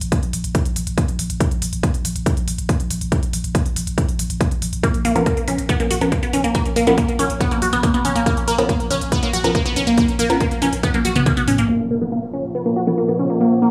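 Driving and relentless, this excerpt of peak-time techno at 140 BPM in Bb phrygian rides a heavy layered kick, smooth hats, crash and toms with a thick saturated sub bass pumping underneath, joined around 4.8 seconds by a squelchy, bright resonant blip pluck and dark, detuned dub chord stabs swirling in phaser and tape echo, before a drum fill gives way at 11.7 seconds to a background impact and a filter sweep, with an eerie metallic drone rising at 12.1 seconds in a moderate stone room.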